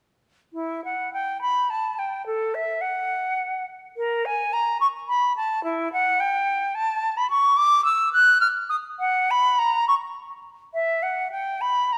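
Solemn and flowing, this excerpt from a longer baroque-style fantasia for unaccompanied flute moves in a rubato 3/4 at around 107 BPM, beginning in E minor and shifting to B minor at 7.3 s. A silver concert flute plays alone from 0.5 to 12.0 seconds, its pure, metallic tone carrying vibrato and tongued articulation as it ranges from E4 up to F#6. The flute sits up front, set in a moderate scoring-stage reverb with a 1.7-second decay.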